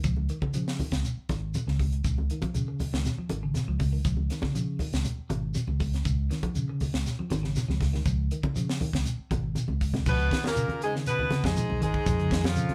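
A dark, round fingered electric bass anchors this driving, funky afrobeat excerpt at 120 BPM in 4/4, set in D-flat mixolydian over a Dbadd9 chord. Around it, a tight funk drum kit with a high-tuned snare, tight kick, hi-hat and crash sounds dry and polished, while a grainy, saturated shekere and thin-skinned, medium-tuned congas played with soft hands add acoustic percussion. A clean electric guitar sits in the background, picking arpeggios through a phaser. After a drum fill from 9.6 seconds, the harmony moves to Db9 at 10.1 seconds and a horn section arrives: a bright alto saxophone carries the melody with vibrato, backed by a gritty tenor saxophone with scooped notes and a punchy baritone saxophone set further back. The band sounds like it is playing live in one room, with a short, wet studio reverb.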